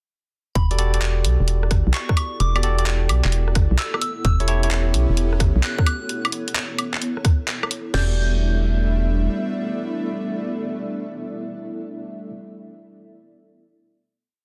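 Soulful and late-night, this two-step UK garage piece at 130 BPM in E dorian swings its 16ths through a short drop from 0.6 s, where tight kicks, cracking snares, toms and crash meet skipping swung hats, rims, claps and woodblock, a hollow organ-like FM bass skips through a syncopated line, worn, slightly out-of-tune tine electric piano stabs echo on tape, and a soft, pure synth bell repeats its riff in the background through chorus and phaser, while a cloudy granular pad and an airy, breathy pad entering at 4.2 s pump with the sidechain. The drums stop before the bass, and the pads hold an Em11 final chord from 7.9 s as the bell rings on, all in a dense, heavily limited mix.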